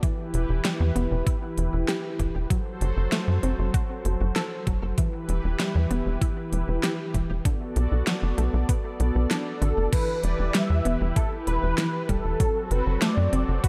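A moody, driving synthwave piece in E minor at 97 BPM opens on a brassy, detuned analog pad with chorus and sidechain pumping, while a round, bright analog pluck sits in the background playing arpeggios through chorus and digital delay. Up front is a thumpy, tape-toned electronic kick, joined by a layered pop kit with a fat snare, crisp hi-hat and crash cymbal. A tight, saturated sawtooth sequencer bass pumps up front from 0.3 s over chords moving through Em, F#dim and Bm7, and the kick drops out briefly at 9.3 s. At 9.6 s a thick, mellow unison lead with vibrato, ensemble chorus and digital delay takes the melody over a dark production with light reverb, in this passage cut from a longer piece.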